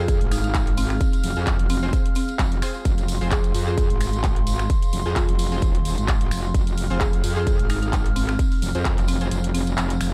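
Aggressive and gritty, this bass house excerpt drives along at 130 BPM in 4/4 with a swung sixteenth feel, sitting on F minor throughout. A metallic wobble bass dominates the low end, distorted, overdriven and thickened with chorus, pumping against a punchy electronic kick that sits up front with studio reverb until the kick drops out at 9.3 seconds. Above them, a buzzing marimba played with medium mallets carries a dry, woody melody through digital delay, while a moody analog pad holds sustained chords with chorus and sidechain pumping. Bold, bright orchestra-hit-like synth stabs punctuate from the background with built-in reverb and delay, stopping at 9.3 seconds. A big-room dance kit of finger snaps, handclaps and hi-hat, plus a jingly, distant tambourine, fills out the groove in a dark production with little reverb overall.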